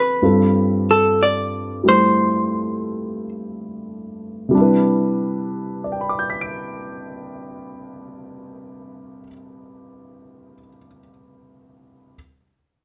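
Swung eighth notes in a slow 4/4 drift between 46 and 66 BPM, with the pulse slowing down over the opening stretch of this tender, late-night jazz ballad in C major, cut from a longer piece. A vintage hollow-body electric jazz guitar carries the melody up front, its dark, clean, picked tone compressed as it moves between A4 and D5 before falling silent at 3.3 seconds. Beneath it, a warm concert grand piano supplies the accompaniment, also up front, spanning from a deep bass register up into the high treble. The harmony rests on a G9sus4 before settling onto a Cmaj9 as a new section begins at 4.5 seconds, and the piano carries on alone until 12.2 seconds. A light reverb gives the intimate sound a soft sense of space.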